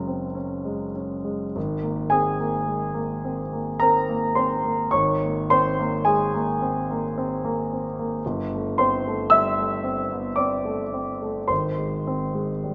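A grand piano with a present, up-front tone and long sustain plays alone across a range from Gb1 to E6 in this hazy, serene impressionist classical piece, a slow rubato 3/4 at 54 BPM tuned to A4 = 435 Hz, moving through Gbadd9, Abadd9, Bbm9/Ab and Gsus24 before arriving on Ab at 11.5 seconds within a moderate scoring-stage reverb, cut from a longer piece.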